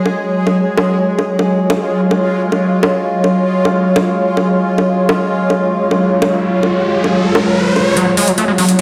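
Hypnotic and alien, this psychedelic trance passage, cut from a longer piece, moves in a straight 4/4. A bubbling, detuned texture with random resonant filter steps holds bright sustained chords up front, dressed in chorus and its own reverb. Beside it sits an airy, breathy pad that blends triangle and sawtooth tones with a noise layer and a moving notch, soft and mellow under chorus. Layered electronic bongos and metallic hi-hats, roughened by overdrive, carry the beat, and an electronic riser enters at 5.4 seconds. At 8.0 seconds a screaming acid riff bursts into the foreground, squelchy and aggressive with a filter sweep, fast attack, distortion, chorus and tape echo. The mix is bathed in a lush hall reverb and sounds as if played on a big system in a bare stone room.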